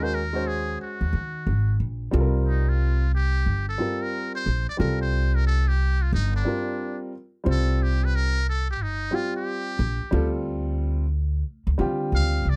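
Mellow and cool, this jazz-hop excerpt from a longer piece moves at 90 BPM in 4/4 with a swung 16th-note feel in C dorian. A woody, thumpy pizzicato upright bass sits up front beside an intimate upright piano whose action noise is audible, while a buzzy, thin trumpet with a metal mute carries the melody with light vibrato and a soft attack. The trumpet takes a solo from 2.1 seconds to the end, all in a light reverb.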